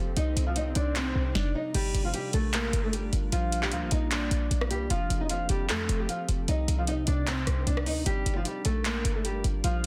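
Dense, heavily limited and set in a digital ambience, this short cut from a longer trap track feels melancholic yet hard-hitting, moving at 152 BPM in a half-time 4/4 feel in G minor. A glassy, warbling FM pad sits in the background from the start, its slow-attack chords softened by ensemble chorus and built-in reverb, while an electronic swell sits in the background until 1.4 seconds. A punchy, tight 808-style bass with a sine tone, a noise layer and a fast, decaying attack also plays from the start, driving the low end from F1 to F2. At 0.2 seconds a booming analog drum machine arrives up front with a deep kick, crisp snare, metallic hi-hats, handclaps, rim clicks and crash, its snare, clap and hats carrying a short room sound and the whole kit re-recorded in a large room. Also from 0.2 seconds, a small, fingerpicked nylon-string guitar carries the melody over this through a low-pass filter, with audible finger squeak. 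The chords cycle through Cmadd9, Gm7, Bb and Fadd9, with the main section settling in from 1.7 seconds.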